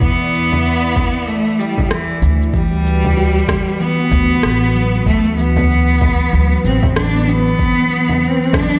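A bright, bowed cello with vibrato carries the melody from the start over a soft, breathy pad with chorus and sidechain pumping, a woody pizzicato upright bass, and an overdriven electronic kick with shaker and rim click, joined at 0.5 seconds by a deep frame drum in the background and at 2.5 seconds by round, ringing steel tongue drum arpeggios, in this mystical, meditative organic downtempo excerpt at 95 BPM with a swung 16th feel, moving from E5 through Gmaj7 to Cmaj7, the cello trailing tape echo and the whole mix sitting in a stone room reverb.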